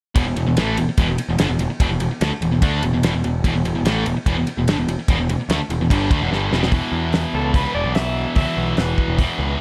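Light reverb and a studio ambience frame this gritty, brooding classic rock excerpt in E minor, moving at 146 BPM in a straight 4/4. A double-tracked, distorted electric guitar carries the riff up front, bright and picked, while a growling electric bass with overdrive sits close beside it, its tone direct and amped. The damped 70s drum kit sounds dry and acoustic, with a fat snare, tight kick, dark cymbals and a rolled-off top, played across hi-hat, kick, ride and snare. A drum fill at 6.3 seconds leads into a second section, where the harmony moves from E minor to a bare E5 chord. At 7.3 seconds a clean lap steel guitar enters with a twangy slide melody, shaped by volume swells and a slapback echo, and it sits a little lower in the mix than the other parts.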